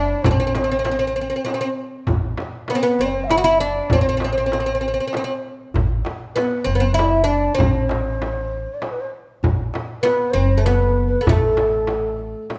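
A bright, plectrum-plucked fretless oud leads this festive Arabic maqam ensemble piece in A maqam rast at 98 BPM in 3/4, tuned to A4 = 437 Hz, with a breathy, mellow ney carrying a higher second line, an up-front pizzicato upright bass with a woody tone holding the low end, a small, close and dry frame drum played with soft hands, and a deep clay darbuka sitting distant in the background, set in light reverb in a short passage cut from a longer piece.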